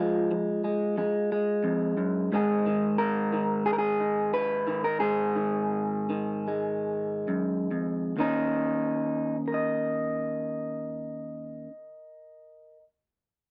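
Intimate and reflective, this short folk piece in 4/4 drifts in rubato between 67 and 93 BPM. A lone electric guitar plays up front through a small old amp, its picked tone slightly broken-up and lo-fi. It moves from F minor to Ab5 at 2.3 seconds, slows through that passage, and settles on Eb5 at 8.2 seconds, all in a dry, close 1970s-style studio sound with light reverb, cut from a longer piece.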